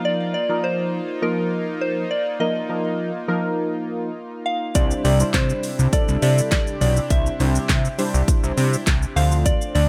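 A soft, pure FM synth bell carries the melody with chorus and delay over round, detuned analog keys with chorus and a shimmering, retro pulse-width pad, both pumping to the sidechain, until at 4.8 seconds a thick, saturated sawtooth bass with a filter sweep and a punchy, up-front electronic pop drum kit of kick, fat snare, metallic hi-hat, handclaps and shaker drive this bittersweet, energetic dance-pop excerpt, heard nearly dry as the chords move from Ebsus2 to Cadd9 to Dm7.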